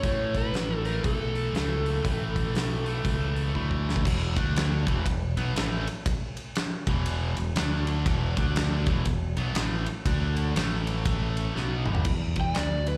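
Driving and swaggering, this clip from a longer piece is blues rock with a southern rock lilt, moving at 120 BPM in 4/4 with a moderate swing on the eighth notes. An overdriven slide guitar, played with fingerpicks and warm in tone, carries the melody at the start and then returns briefly at 12.4 seconds. Beneath it, a bright, double-tracked distorted electric guitar picks a riff through overdrive and slapback echo until it stops at 12.1 seconds. A growling fingered bass, punchy and overdriven, sits up front for the whole clip, alongside a big acoustic rock kit with a fat snare, punchy kick, crash, ride, hi-hat and toms that rolls through fills at 3.6 seconds and again near the end. The harmony centres on A before rocking between E5 and D5 power chords, touching A5 and closing on Gmaj7, all heard through a small, roomy club PA with reverb that gives it the feel of a live gig.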